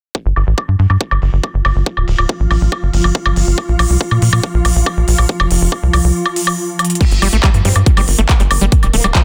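A punchy, up-front electronic kick drives a straight 4/4 pulse at 140 BPM, joined almost at once by a crisp big-room dance kit of hi-hats, handclaps, woodblock and crash cymbal, with a filter sweep opening up the drums through the first section. A tight sequencer bass in G minor drives hard beneath the beat with a sawtooth-and-square filter pluck, while a swarming, detuned drone holds tense sustained chords on G5 and Bb5, its granular sine tone evolving behind a pumping sidechain and its own reverb. The mood is hypnotic and alien. The kick drops out at 6.1 s before a drum fill, and at 7.0 s the track moves into a new section as a squelchy, gritty acid bass riff enters with resonant saturation and digital delay. A wobbling formant-sweep bass follows at 7.7 s, sitting in the background with chorus and delay. The dry, dense, heavily limited mix keeps the tape-warm drums and driving bass forceful in this excerpt from a longer psychedelic trance piece.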